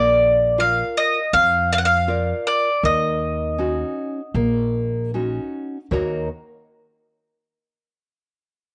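A mournful, longing fado-style ballad in Eb minor opens with a bowl-back mandolin, nylon-string guitar and upright bass sounding together from the start, moving at a rubato 80 BPM in 4/4. The mandolin carries the melody up front, its bright, picked double strings holding to a narrow high range. Beneath it, the fingerpicked guitar supplies full-bodied, deep classical accompaniment with a cassette-tape colour, while the upright bass plucks woody, thumpy gut-string notes low in the register. The harmony moves from Bb to Ebm7 at 2.8 seconds, and the mandolin falls silent at 5.1 seconds, leaving guitar and bass to carry on into a new section at 5.9 seconds and continue until 6.3 seconds. A moderate spring reverb and small-room ambience surround the playing, and the home cassette recording gives the whole cut, taken from a longer piece, a soft, dulled top end.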